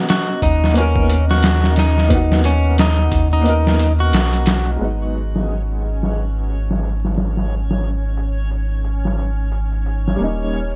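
Brooding and melancholic, this swung trip hop passage, cut from a longer piece, opens with a slightly broken-up electric guitar melody drenched in dub echo that stops at 4.7 seconds, over a clear, woody upright piano with tremolo and a very quiet, detuned analog pad with chorus and phaser. Muffled, pitched-down sampler-style drums with a thumpy kick and tape-warm, low-pass-filtered tone sit up front beside a deep, round dub sub bass. From 5.5 seconds a reversed, swelling granular texture adds a bright, dreamy shimmer, while a loud bed of vinyl crackle accompanies the chords as they move from Bmaj7 to G#m7 and close on D#7.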